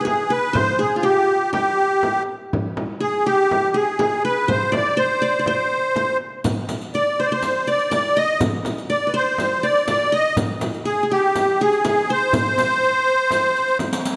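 A spacious, reverberant scoring-stage sound frames this soulful, hypnotic excerpt of an Arabic maqam ensemble in C maqam nahawand, moving at 122 BPM in a straight 4/4. Up front, a reedy, shimmering musette accordion carries the melody, while a mellow, bright-edged qanun played with fingerpicks adds a second line on its triple strings, and a small frame drum played with soft hands keeps time from the start. A riq with dark jingles and hard hands joins at 6.4 seconds, and a drum fill at 13.8 seconds closes the section.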